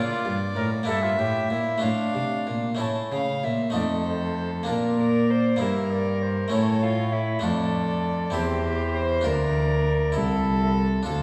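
A clear trumpet with light vibrato sings the melody above a rich, reedy gut-string violin second line, a bright plucked harpsichord and a dark, smooth-topped bowed cello bass, heard from further back in a wet recital hall in this solemn, introspective baroque-style sonata movement in 6/8, a fragment of a longer piece that moves into a new section at 3.7 seconds.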